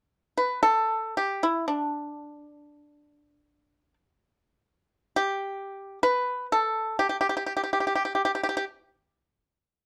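Flowing and serene, this short excerpt of Chinese traditional music features a solo pipa in free time, set in the G gong mode. Plucked with fingerpicks, the pipa sounds dry, percussive and up front, moving within the range of D4 to B4 from 0.4 to 8.6 seconds. A moderate studio reverb and a dark, warm production frame the instrument.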